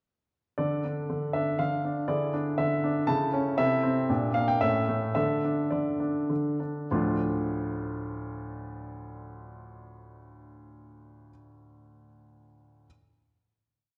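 A clear, polished baby grand piano plays this dramatic, serious classical-period sonatina alone in D minor and 3/4 at 96-121 BPM, its up-front single-line melody and broken octaves ringing in a wet recital hall with a dark production, slowing from 2.8 seconds before settling on a final D minor chord at 6.9 seconds.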